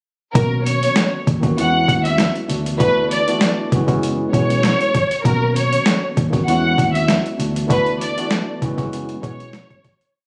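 A lush, bowed violin section with vibrato and a worn, slightly out-of-tune, lightly overdriven electric piano playing chopped chords open this confident boom-bap hip-hop piece, each repeating like a sampled loop over a dark, round, foam-muted bass line and a gritty, pitched-down sampler-style kit with a thumpy kick, medium-tuned snare and laid-back swung sixteenth-note hats, captured on a phone in a studio room with light reverb before fading out from 7.7 seconds.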